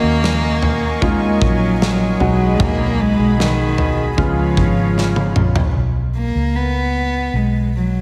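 A steady, straight 4/4 pulse at 76 BPM carries this heartfelt, hopeful pop ballad excerpt, where an intimate, airy-bowed cello sings the melody up front over clear grand piano, a detuned sawtooth pad shimmering with chorus and tremolo, a round, foam-muted electric bass and a punchy studio drum kit whose fill at 5.0 seconds leads into a closing passage at 5.8 seconds where cello and bass continue alone, all set in a big concert-hall reverb.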